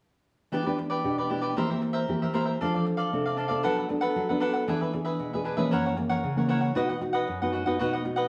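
Nostalgic and bittersweet, this short samba fragment in E minor moves at 116 BPM in a straight 4/4, with a crisp, picked cavaquinho and a dark, full-bodied, thumb-plucked nylon-string guitar both playing accompaniment up front from 0.5 to 8.3 s. The harmony passes through Em7, C7/E, F6, D6/F#, E7 and F#7 before settling on B. A wet studio reverb gives the sound a sense of being heard from further back in the room.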